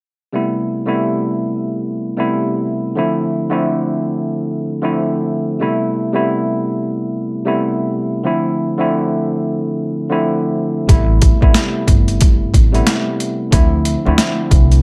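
Boom-bap hip-hop at 91 BPM with a swung 16th feel in A minor, reflective and gritty, cut from a longer piece. A worn, slightly out-of-tune tine electric piano sits up front, lightly overdriven through a combo amp with a cassette-tape haze, alternating Am7 and Dm7 alone until 10.9 s. At that point a woody, dark pizzicato upright bass on gut strings arrives alongside a compressed, pitched-down sampler-style kit with a thumpy kick, high-tuned snare and hi-hat, overdriven and re-recorded in a large room, all under light reverb.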